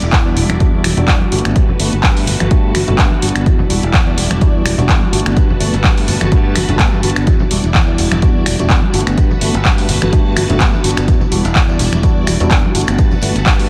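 A punchy electronic kick sits up front on a 4/4 groove with a light 16th-note swing, joined by analog drum-machine finger snaps, handclaps and hi-hats that pump against it, and by very quiet, close tambourine and congas, in this sunny, joyful filtered disco house excerpt. A bright, growly fingered electric bass and a clean tine electric piano with phaser, entering at 0.3 seconds, both pump and sit under a low-pass filter as they move between Em7 and Gmaj9. Above them, a lush sawtooth string machine holds slow-attack chords with ensemble chorus and vintage 12-bit grit in a fairly dry mix.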